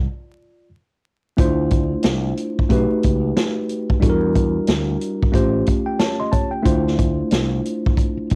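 This jazz-hop fragment moves at an unhurried 91 BPM in 4/4, with a 16th-note swing and a mellow, cool mood centered on D dorian. A worn, slightly out-of-tune tine electric piano sits up front with a clean, direct sound, featured in the opening break while a bright fretless electric bass, given a touch of tube saturation, holds down the low end throughout. At 1.4 seconds a vintage acoustic drum kit arrives with a punchy kick, a medium-tuned snare and hi-hat, its rolled-off top and cassette-tape coloring giving it a natural, studio-room character. From there the harmony moves through Dm9, B7b13, Em7b5 and A7alt before settling back on Dm9 at 6.7 seconds. The whole mix carries a light reverb, vinyl crackle and the character of a home cassette recording.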